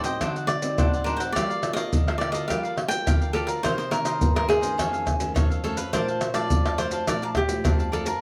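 The recording has the close, lively sound of a band playing together in one room, with a moderate studio reverb that keeps it intimate. This short, playful, sunny samba and choro excerpt moves at 105 BPM in a straight 4/4 in Bb major. An up-front cavaquinho carries the melody with a picked, crisp, warm tone, while a second cavaquinho adds bright, crisp picked accompaniment further back in the mix. A classical nylon-string guitar with fresh strings is fingerpicked underneath, its audible finger squeak adding intimacy to the low end. The maracas, pandeiro, surdo and tamborim sit up front with hard hands and a tight surdo, their band-limited, vintage colour giving the groove an old-fashioned snap. The harmony runs through D7b9, Gm9, Cm9 and F7alt before settling on Bbmaj7 at 5.9 seconds, with every part playing throughout the 8.2 seconds.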